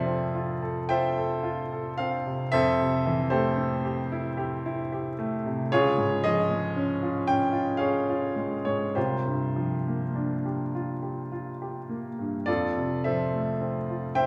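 Dreamy and hazy, this short cut from a longer impressionist classical solo piano piece drifts in a rubato 3/4 at roughly 49-58 BPM in F major. A clear, intimate baby grand sits up front with long sustain and audible action noise, its chords moving from Fmaj7 through Am7/F, Dbadd9 and C9sus4 before settling back on Fmaj7 near 12.5 seconds, all bathed in a wet recital-hall reverb over a small-room ambience.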